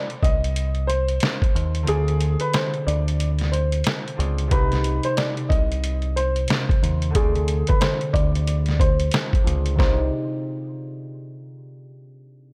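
Muffled, pitched-down sampler drums with a thumpy kick sit up front in this dark, reflective boom-bap hip-hop excerpt at 91 BPM, swung on the 16ths in C minor, joined by a round, deep dub electric bass and a woody, slightly detuned upright piano melody treated with filtering and delay, while a ringing, fingerpicked harp with a cassette-tape tint enters at 1.8 seconds, the kick drops out from 1.9 seconds until a filter sweep begins at 4.5 seconds, all over a brooding Cm to Dm7b5 progression.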